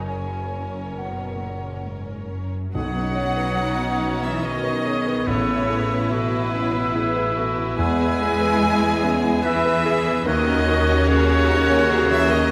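Bathed in a wet scoring-stage reverb, this tender, hopeful cinematic excerpt moves in a rubato three-time, opening with an airy silver flute and a distant, intense violin section on second lines over a background of viola section, deep-toned grand piano, smooth cello section and focused double bass section. At 2.7 seconds a bright solo violin takes up the melody, joined by a very quiet, lush violin section, while a mellow French horn section holds sustained chords and close, dry timpani sound briefly. A roomy oboe and then a classical-style clarinet, from 3.6 seconds, add further second lines as the bowed strings sing with vibrato.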